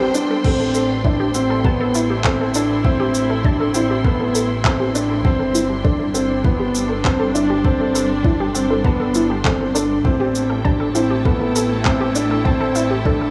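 Awash in a huge ambient reverb with a small-room tint, this cinematic, moving piano and strings electronica drops in at 0.4 seconds, where a deep electronic kick and a round, sawtooth-and-sine analog bass pumping under sidechain join the mix. A dark, boxy concert grand sits up front with a repeating riff through tape echo and shimmer reverb, while a lush, distant bowed string section holds sustained chords and a warbling, lo-fi, detuned pluck spins arpeggios through chorus and tape echo. An organic electronic kit adds crash cymbal, handclaps and shaker as the harmony moves from Am7 to Gsus4 and back to Am7 at 10.0 seconds in this cut from a longer piece.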